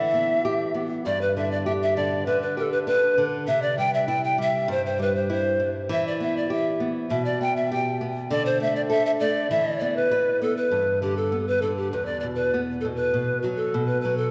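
Andean folk in an earthy, wistful mood, heard as a short section cut from a longer piece in a straight two-beat metre. A polished pan flute carries the melody throughout, its woody, airy tone close-miked and up front, shaped with vibrato and tongued, expressive phrasing. Beneath it, a small-sounding nylon-string guitar plays fingerpicked accompaniment, acoustic and warm, also sitting up front but a little lower in level than the flute. Both parts play from start to finish, moving through a minor-leaning progression built around Em, G, C and D before shifting to a brief closing section from 10.7 seconds that ends on a B chord. The whole performance is set in a church or concert hall, where a wet, long reverb lets each note hang and bloom into the space.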